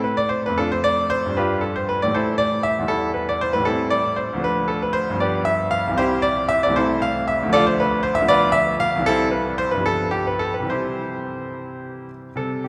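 A lilting compound metre with a flexible, rubato pulse gives this baroque-style suite movement a dance-like sway, and the mood stays serene throughout. A solo grand piano carries everything from 0.0 to 12.7 seconds, spanning C2 to F5, tuned to A4 = 436 Hz. Its tone is clear and intimate, with long sustain and audible action noise that keeps the instrument present and polished. A wet church reverb with a 3.7-second decay surrounds the playing, placing the listener further back in a resonant room. The harmony moves from minor chords through seventh and diminished colours before settling on a C chord at 10.7 seconds, and the passage is cut from a longer piece.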